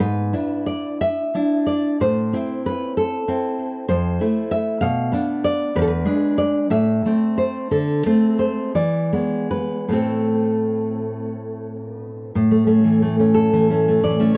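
This short excerpt has the dry, close sound of a 1970s-style studio recording, lightly touched by reverb, with a solo nylon-string guitar placed up front and given a tape echo. It is a romantic classical guitar piece in A minor and 6/8, played with rubato at a slow, flexible pace of about 48 to 67 beats per minute in dotted quarters, and its mood is passionate and wistful. The fingerpicked guitar has fresh strings and a deep classical tone, ranging from E2 up to F5 as it moves through harmonies from E7 and A minor to Fmaj7, a diminished chord and back home. The opening section runs to 12.3 seconds, when a brief new section begins on a bright A major chord, lifting the minor-key longing just before the fragment breaks off at 14.4 seconds.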